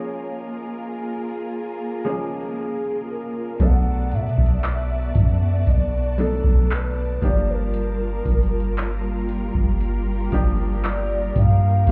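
Contemporary R&B at a slow 58 BPM, moody and longing, this excerpt opens with a hollow, woody synth lead carrying the melody with chorus and delay over clear grand piano and lush bowed strings that pump under sidechain, moving through A#m7, Bm7 and Gm7. At 3.6 seconds a soft, round 808-style bass and a booming analog drum machine with deep kick, metallic hats and handclaps arrive up front. The whole mix sounds muffled, as if heard through a wall, with club reverb.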